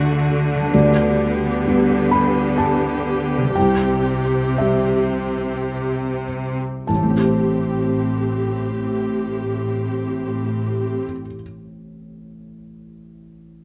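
This cinematic, emotional film score for orchestra, cut from a longer piece, carries a sorrowful, longing mood at a slow, rubato pace in three, easing further during its opening phrase. A felt-muted upright piano plays accompaniment, its soft, mellow, intimate tone sitting up front with audible action noise. A viola section adds lush, bowed harmony with focused vibrato, while a cello section holds the bass line with an intense yet smooth-topped sound. A concert harp rings out fingerpicked arpeggios in the background. The harmony drifts from D through G over D to C before settling on A minor seventh at 6.9 seconds. The strings and harp fall away near 11.1 seconds, and the piano continues alone to 13.6 seconds, captured by close, detailed microphones in light reverb.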